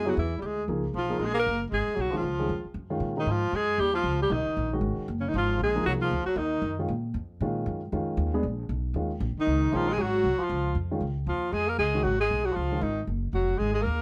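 A brisk swing feel at 232 BPM in 4/4 drives this sophisticated, warm small-group jazz piece in F# major, cut from a longer performance, with a woody, growly pizzicato upright bass up front throughout. A clear alto saxophone with light vibrato and scooped notes carries the melody while a breathy, whispered tenor saxophone traces an intimate second line beneath it; both fall silent at 6.8 seconds and return at 9.4 seconds. A concert grand piano with deep bass and short sustain comps up front until 12.8 seconds, all set in light reverb over rich chords such as Gbmaj9 and G#13/B#.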